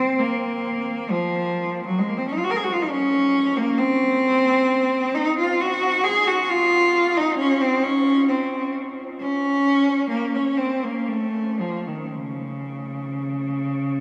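A lone bowed cello opens this brief classical fragment, its rich, smooth tone carried by vibrato that gives each note a mournful, lonely cast. The single player moves freely in 3/4 at roughly 55-70 BPM, with rubato loosening the pulse so the phrasing breathes like speech. The line ranges from Db3 up to Bb4, and the playing stays even throughout the 14 seconds. Although the cello sits up front, it also has a distant quality, set inside a cathedral space whose long reverb, about 7.1 seconds, leaves a lingering halo around every phrase. The result feels solitary and expressive, like a private meditation heard across an empty nave.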